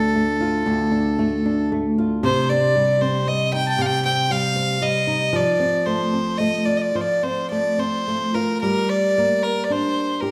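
Celtic slow air in a mournful, longing mood, flowing freely in three, with a clear, earthy bowed fiddle carrying the melody with light vibrato up front while a fingerpicked flamenco guitar supplies acoustic accompaniment, both playing throughout this short cut from a longer piece and set in the lush reverb of a recital hall.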